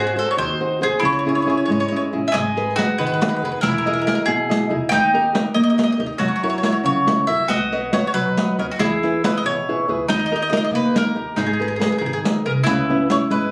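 Romantic and wistful, this short cut from a longer Italian folk serenade moves in 6/8 with a straight feel. A mellow, round mandolin carries the melody up front with its doubled strings, while a bright bowl-back mandolin plays a quieter second line beneath it. A fingerpicked flamenco guitar, also up front, supplies the accompaniment, and a woody, growly upright bass plucks a dark, thumpy low end further back. At 2.3 s a close, dry riq joins with dark jingles as the harmony moves through minor chords, colored sevenths and added-ninth voicings. Captured on a phone in the room, the recording has a moderate studio ambience and a club-like reverb.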